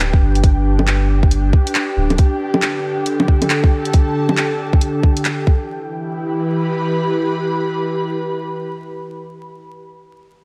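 A breathy, warbling pad anchors this rainy, wistful future garage excerpt at 137 BPM in E minor, its detuned sustained chords moving from G to Dsus4 and settling on Em at 5.5 seconds, colored by chorus and pumping against the sidechain. Beneath it, a soft, round dub sub bass sits deep and up front, also pumping, but drops out at 2.2 seconds. A tight, layered electronic kick drives the swung 16th-note groove alongside a garage kit of bongos, handclaps and hi-hat, both placed forward in the mix before falling away around 5.5 seconds. Far in the background, a flickering granular texture hovers on a single high note with its own reverb. A lush hall reverb and a layer of vinyl crackle give the whole passage a dusty, vintage haze, leaving the pad alone in the closing section.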